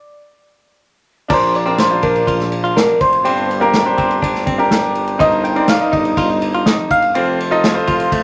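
A straight 4/4 pulse drives this bittersweet piano-driven pop fragment, cut from a longer piece. It opens with a round, gentle FM synth lead alone over a stop, its keys-like tone struck with a fast attack and decaying under a chorus effect as it carries the melody. At 1.3 seconds the band enters: a clear concert grand piano sits up front with deep bass, long sustain and audible action noise, while a mellow tuba supplies a punchy, smooth-topped bass line with light vibrato. An acoustic kit played with bundle sticks adds dark cymbals, a medium-tuned snare and a tight kick in a small room, and a clean, picked electric guitar, recorded direct and compressed, plays its riff in the background. The harmony moves from Bb through Gsus4 and Cm7/G to F, with the lead stopping at 7.4 seconds, all wrapped in a wet club reverb.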